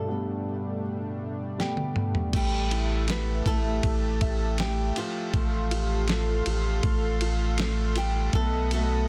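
A straight 4/4 pulse takes hold when a gritty, compressed sampler-style drum kit with a thumpy kick and fat snare enters on a fill at 1.6 seconds, and a round, deep sine sub bass follows at 2.3 seconds, both sitting up front in this emotional, melancholic pop ballad cut from a longer piece. From the opening, a fingerpicked flamenco guitar carries the melody over an open concert grand piano accompaniment and a shimmering, detuned pulse-width pad with chorus holding sustained chords, moving from Gadd9 through A5 and F/A to B7. A mellow French horn section adds a smooth-topped second line with light vibrato in the background at 5.7 seconds, and the piece sits in light studio reverb with a dense, heavily limited modern master.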